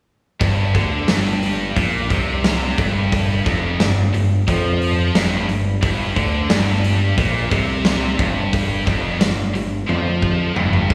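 A scooped, high-gain electric guitar drives this aggressive, heavy hard rock excerpt, its bright, double-tracked riff sitting up front with distortion and a slapback echo, while a fat, saturated sawtooth bass with a detuned, sustained tone thickens the low end in G minor at 89 BPM. A huge acoustic arena drum kit with a punchy kick and fat snare plays throughout in a big, natural-sounding room, closing with a drum fill from 9.9 to 10.9 seconds. The whole excerpt has the feel of a live gig heard through a venue's PA, with small room ambience and hall reverb around the band.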